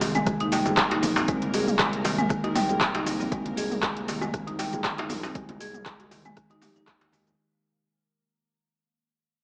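Heard through a lush hall reverb with a small-speaker sound, this driving, earthy afro house excerpt at 118 BPM rides a drop on an Abadd9 chord, with an up-front woody marimba arpeggiating through dub echo, overdriven deep house drums with metallic hats, a punchy electronic kick arriving at 0.3 s, cracking djembe, faint ringing congas, a smooth, mellow synth bass, and an ethereal, airy pad shimmering with chorus and phaser in the background as the pad, marimba and bass pump with sidechain before everything fades out from 2.0 s.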